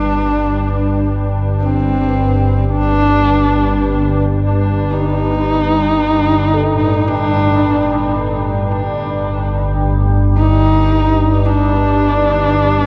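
A dark, desolate ambient drone excerpt in which a husky, woody horsehead fiddle carries the melody up front with light vibrato, portamento and tape echo over a detuned, organ-like drone under a filter sweep, while very quiet bronze gamelan-type gongs play arpeggios, a bubbling resonant stepped-filter texture enters in the background at 11.7 seconds, and everything sits in a huge, wet reverb on worn, warbling cassette tape.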